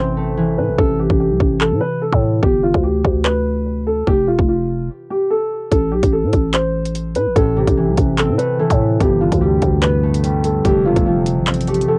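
Cold and ominous, this half-time drill excerpt in A minor moves at 146 BPM in 4/4 and is cut from a longer piece. A dark, mellow upright piano carries the melody up front, its woody, boxy tone colored by cassette tape, while a ringing, fingerpicked concert harp adds acoustic accompaniment that drops out at 3.5 seconds and returns at 7.4 seconds. A growling, buzzy 808-style bass with a fast attack and decaying sine body sits up front beneath them. The electronic drill kit enters at 0.8 seconds with a hard-clipped kick, metallic hi-hats and handclaps, all given a warm tape character. Light reverb and a homemade cassette character frame the harmony as it cycles through Am, G and F, later touching Gadd9.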